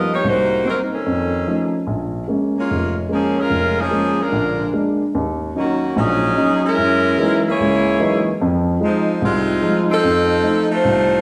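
Brassy and dramatic, this short swinging jazz excerpt in Bb minor moves at 147 BPM in 4/4 with a triplet swing on the eighth notes. An edgy saxophone section carries the melody up front, its close-miked, vibrato-laden ensemble sound ranging from Eb3 up to D#5. Beneath it, a baby grand piano plays the accompaniment from low F1 to D#4, its intimate, natural tone close by and marked by audible action noise. Both parts play throughout, passing through a minor-key turnaround of Cm7b5, F7alt and Bbm7 before a second phase from 5.1 seconds moves through Ebm7, Gb13, Fm7 and F7. A wet large-studio reverb places the ensemble a little further back in the room, giving the brassy saxophones and the piano a spacious halo as the passage is cut from a longer piece.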